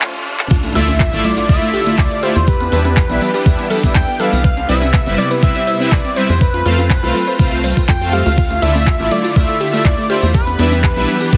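Heavily compressed and radio-like, with a dull top and light digital ambience, this expansive, bittersweet progressive house piece at 122 BPM in D dorian opens on a riser and drum fill over a bright filtered supersaw swell. At 0.5 s it drops on an impact into an up-front, overdriven, knocking electronic kick. Around it sit a pumping pop drum kit of handclaps, hi-hat, crash and ride, plus a jingly tambourine and tape-toned congas and woodblock in the background. Above them come a punchy sawtooth sequencer bass, dark chorused pluck arpeggios with tape echo, and smooth phased supersaw stabs. On top rides a thick, nasal unison lead with vibrato, all over chords cycling through Dmadd9, Em7, Cmaj7 and F.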